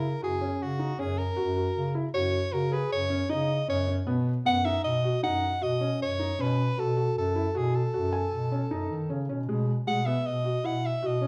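An uneven 7/4 pulse at 155 BPM drives this restless, pensive chamber piece, where a breathy soprano saxophone with light vibrato carries the melody in a jazz style up front, a soft felt-muted upright piano spins intimate arpeggios, and a mellow, smooth-topped bass clarinet holds the bass line in classical fashion, all within a recital hall's wet reverb as the harmony moves from F# to B7 at 4.1 seconds and Eadd9/B at 9.5 seconds in this short cut from a longer work.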